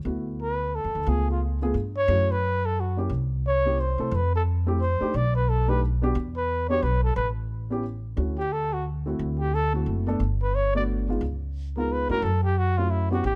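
A dark, mellow baby grand piano opens this relaxed, swinging small-group jazz piece in D major, with the pizzicato upright bass joining almost at once and a breathy flugelhorn taking the melody from 0.4 seconds. The tune moves in a brisk 3/4 at 178 BPM with a gentle swing on the eighth notes. The flugelhorn sits up front, close-miked and intimate, with a soft attack, light vibrato and a whispered tone touched by plate reverb. The bass is woody and acoustic on steel strings and also stands forward, while the vintage-sounding piano stays smooth and low in the mix, its action noise faintly audible as it comps. The harmony wanders through chords such as D69, F#m7 and a chordless bar before a second section at 8.2 seconds settles onto Dmaj7, D7 and Gmaj7, all in a dry room. This short passage is cut from a longer performance.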